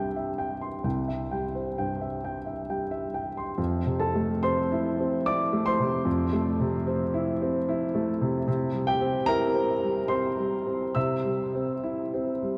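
A lone concert grand piano opens on a C chord, its smooth, vintage tone sitting up front with deep bass and the clatter of its action clearly audible. This is neoclassical minimalist piano in 3/4, played with a rubato feel that gives the melancholic, wistful mood an unhurried, searching quality. At 3.6 seconds the harmony shifts to Fmaj7, opening a new section that lingers before settling back onto C at 8.5 seconds. The piano spans from C2 up to E6, and although its own notes have a short, intimate sustain, they are carried into a vast, echoing cathedral reverb that lets each chord hang in the air. The result is a brief excerpt from a longer piece, both close and distant at once.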